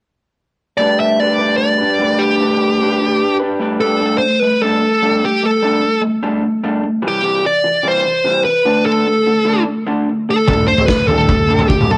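Wistful and jangly, this short indie rock excerpt at 149 BPM in G major pairs a smooth, overdriven lead guitar singing a melody with a dark, slightly broken-up, lo-fi rhythm guitar picking a riff through a small old amp. Both enter at 0.8 seconds over chords that move from Gadd9 to Gsus2, C and D5. The lead carries an analog delay, and at 10.5 seconds a loose acoustic drum kit joins with a punchy kick, medium-tuned snare and toms in a pumping small room. The home cassette recording lends a light-reverb haze.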